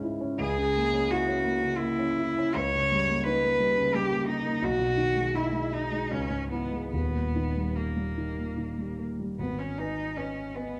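Romantic classical duo in G# minor: an elegiac, yearning fragment of a longer piece in a rubato 3/4 at 71-89 BPM, where a mellow, dark concert grand with deep bass and audible action noise accompanies from the start and a single rich, bowed cello sings the melody with vibrato from 0.4 s, both up front in a moderate recital-hall reverb, before the music settles onto G# minor at 9.4 s.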